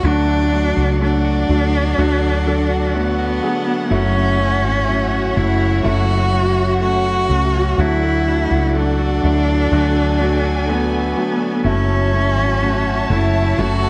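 A straight 4/4 feel carries this heartbroken, longing pop ballad fragment, where a rich, bowed solo cello sings the up-front melody with vibrato over a polished grand piano, a studio string section holding smooth sustained chords with portamento, a very quiet clean electric guitar picking arpeggios and a growly, round fretless bass, as the harmony moves between D and F#m7 in a dreamy mix soaked in lush hall reverb.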